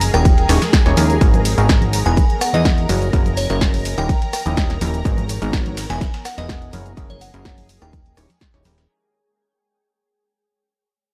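This bittersweet, soulful piano house excerpt opens already in the drop, with a silky, detuned analog string pad and a blurred, evolving granular cloud pad sitting in the background over a funky, ring-modulated analog bass that pumps up front with tube saturation. The percussion spreads across several parts: a punchy analog drum machine carries hi-hat, rim click, shaker and snare, a very quiet, compressed sampler-style kit adds ride cymbal and a fat snare, and soft-handed tambourine and congas sit close but barely audible. A glassy, crystalline FM synth bell carries the melody, warbling through chorus and analog delay. A hollow, wave-folded organ stab plays a mellow background riff, treated with phaser and delay. The layered electronic kick lands up front from 0.3 seconds, and the harmony circles through D#7b9, G#m9, Emaj7 and F#9 while the whole passage fades out from 1.2 seconds, captured as a dry, gritty hardware recording with digital ambience.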